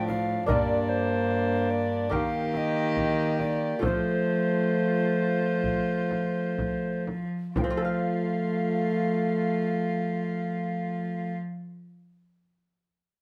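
A courtly, festive Renaissance-style consort dance in 4/4 and F mixolydian, this excerpt moves at 60-75 BPM and slows over its first 7.6 seconds as the harmony passes through Gm, Eb and F. A close, airy alto recorder with a crisp chiff carries the melody over a reedy gut-string violin second line, a delicate fingerpicked lute with doubled strings, a smooth solo trombone and a rich, up-front bowed cello on the bass. A deep frame drum played with soft hands accompanies until 8.0 seconds, and the consort sits in a moderate stone-room reverb.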